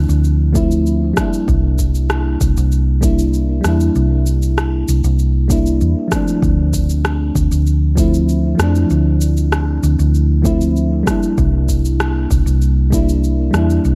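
Wistful and gently warm, this sunset chillout passage drifts along in a straight 4/4 feel, cut from a longer piece. A soft, full-bodied FM electric piano carries the accompaniment up front, its fast-attack, decaying tones thickened by chorus and an analog delay as the harmony sways between Dm7 and C7. Beneath it, a hollow-body short-scale fingered electric bass sits prominently in the mix, dark and round, with a touch of tube saturation adding grit. Electronic cabasa and rim click enter at 0.1 seconds, and an electronic kick drum follows at 0.6 seconds, its deep, layered thump carrying a tape-tinged character from being re-recorded in a small room. Light reverb and a digital ambience wrap the whole arrangement in a soft, hazy space.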